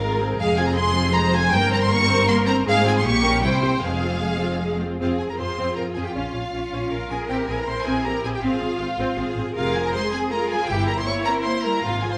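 In a quick 3/4 at 158 BPM with a straight feel, this urgent, dramatic classical-period movement for string orchestra in F minor drives forward from the first beat, cut from a longer piece. The first violins carry the melody high in the register, intense and up front with vibrato. The second violins hold an inner line an octave below with a distant, clear tone. Beneath them the violas supply smooth, even accompaniment, while the cellos and double basses share the bass, the cellos focused and close and the basses carrying a smooth top. The harmony moves from F minor through a diminished chord to C, then turns to B-flat minor and a C seventh, and the opening phrase returns at 5.0 seconds. A recital-hall reverb lends the whole string body a lush, resonant bloom.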